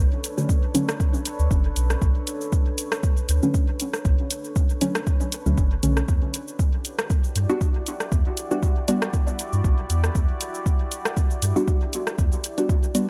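A round, soft sub bass opens this hypnotic, meditative dub techno excerpt, pumping steadily as a small-room deep house kit of cabasa, hi-hat and rim click soaked in dub echo arrives at 0.2 seconds, followed by an overdriven, up-front electronic kick that anchors the groove. A muted, warbling chord stab with a vintage, detuned character enters at 0.4 seconds, its filter sweeping throughout as chorus, phaser and echo trail each hit. Alongside it, a moody, evolving pad, present from the very start, sustains Bm9 before shifting to Em9 at 6.1 seconds, all set in a digital ambience.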